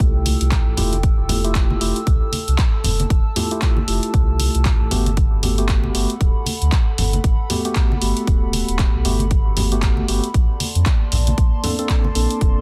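A swung sixteenth-note groove at 116 BPM in 4/4 drives this soulful deep house clip in F major, cut from a longer piece. A punchy, layered electronic kick sits up front, joined by the handclaps and hi-hat of a tape-toned analog drum machine, while low-tuned, thin-skinned congas add bright, saturated color in the background from 0.3 seconds. Beneath them, a deep, full sub bass with an octave layer blends sine and triangle tones with a fast attack and sustained notes, pumping against the kick. A mellow, clean tine electric piano plays stabs trailed by dub echo, and a dark, moody analog pad of detuned square, sawtooth and triangle waves with a sub octave swells in slowly and holds long chords through chorus, phaser and sidechain pumping. The harmony moves from Fmaj9 to Gmaj9 at 4.9 seconds and Bbmaj9 at 10.3 seconds, all in a dry, dense, heavily limited modern mix.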